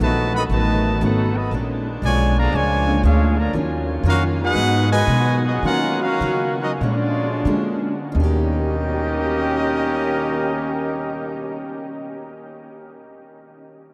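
Sultry and swinging, this big band swing excerpt in 4/4 at 83-119 BPM puts an up-front trumpet section with light vibrato on the melody over a woody pizzicato upright bass, while a background trombone section carries a second line, a dark, mellow baby grand piano and a full-bodied picked jumbo acoustic guitar accompany, and a distant, roomy saxophone section holds very quiet sustained chords, the tempo slowing from 3.5 to 8.1 seconds as a huge, wet reverb fills a vast, echoing space.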